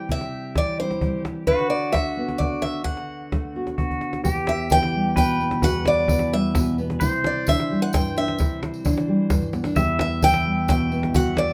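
In a steady triple metre, this nostalgic acoustic folk excerpt sets a bright, boxy, picked parlour steel-string guitar melody up front over full-bodied, fingerpicked nylon-string accompaniment with audible finger squeak, while a clean, twangy, compressed pedal steel played with fingerpicks and slide carries a softer second line, a woody cajon with faint snares and soft hands keeps time, a jingly tambourine joins at 4.2 s as a new section begins, and percussion fills at 3.9 s and 9.4 s mark the turns under moderate studio reverb.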